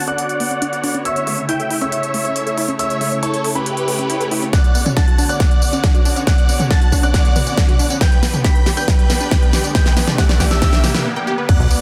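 Uplifting trance at 138 BPM, this driving, emotional build-up cut from a longer piece sets a huge, euphoric supersaw lead with tape echo and sidechain pumping alongside a clear, vintage concert grand piano line in the background, lush detuned unison pluck arpeggios, filter sweeps on both synths, and a big-room dance kit with a huge snare and crisp hats, while a punchy, up-front electronic kick joins at 4.5 s with a drum fill, a background riser and sub drop arrive at 6.9 s, and after a brief break a funky, ring-modulated analog bass lands with the impact at 11.6 s in a dense, heavily limited mix.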